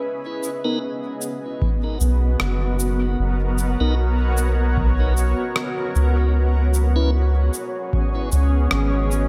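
A slow 76 BPM pulse in 4/4 with a gentle 16th-note swing carries this hazy, meditative ambient dub fragment, as cabasa and rim click with a big-room sound join at 0.4 s and a deep, tape-warm electronic kick drum arrives at 1.6 s. A cloudy, blurred granular pad sustains Bmaj7 moving to C#m7 over a soft, round dub sub bass sitting up front, while a piping tonewheel organ with key click, stopped rotary speaker and dub echo plays stabs. An airy, breathy wind-like noise texture drifts in the background from 6.8 s, all set in light small-room ambience.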